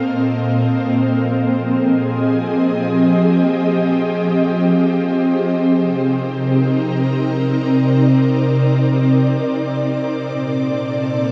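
An ethereal, warbling pad sits up front in this weightless, peaceful free-time ambient excerpt, its detuned sawtooth and triangle layers with a breath of noise drifting through sustained Fm9, Cm9 and Bbmaj7 chords under ensemble chorus and shimmer reverb, while a very quiet glassy sine texture of drifting overtones glints only from 0.0 to 1.0 seconds, all wrapped in a huge wet reverb with a 7.9-second tail and the vintage haze of cassette tape.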